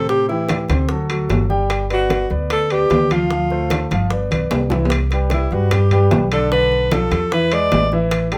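A breathy alto saxophone leads from the opening, its subtone and light vibrato giving a clear jazz solo voice up front, joined by a warm concert grand piano with deep bass and a woody pizzicato upright bass in this sunny, sophisticated Afro-Cuban jazz passage cut from a longer piece. Tight, high-tuned bongos, close and dry, and low-tuned congas struck with hard hands sit in the background, while vintage metal-shell timbales with a band-limited ring enter at 0.5 s. A drum fill at 4.3 s carries the music into a new section at 4.9 s, all set in a moderate studio reverb.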